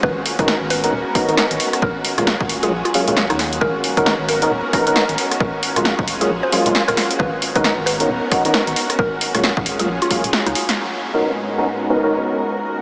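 Soaked in a huge, dreamy reverb with a small-speaker sound, this late-night, bouncy two-step UK garage excerpt sets a woody, very quiet mallet-like synth pluck melody over silky string-machine chords that pump under ensemble chorus, a hollow, dark organ-like FM bass, a punchy electronic kick, an up-front analog drum machine of hi-hat, rim click and snare, and nasal, percussive organ stabs trailed by diffuse delay and a filter sweep, until the kick drops out at 10.3 seconds for a drum fill and a band accent at 10.7 seconds, after which the strings and stabs ring on toward 12.8 seconds.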